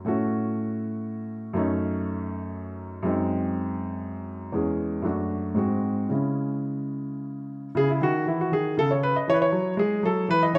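A solo baby grand piano opens this solemn, grave passage, a baroque-style suite movement in triple time, cut from a longer piece and played with a flexible rubato feel. The piano's tone is warm, open and up front, ringing in a moderate recital-hall reverb as the chords move gravely toward a resolution at 6.1 seconds. A new section begins at 7.7 seconds, reaching a rich, extended chord at 9.3 seconds before the recording ends.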